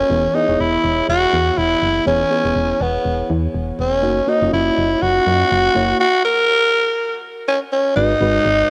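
A growling tenor saxophone carries the melody up front, its tone raspy and breathy with a light vibrato, gritty yet clear, and softened by a cassette-tape patina. This is a glossy, uplifting slice of 1980s-style pop at 122 BPM in 4/4, with a gentle 16th-note swing and tuning set slightly below standard pitch. Beneath the horn, a mellow FM electric piano supplies soft, full-bodied chords with a chorus shimmer, a faint noise layer and its own cassette coloring. A solid FM bass anchors the low end with a punchy, dark, digital tone of fast attack and decay. The harmony moves through E6, C#m7/E, D#m7/F#, and F#7 before landing on G#m7 at 8.0 seconds. Light studio reverb wraps the parts in a homespun cassette sound, and the piece is cut from a longer work, running to about 8.7 seconds.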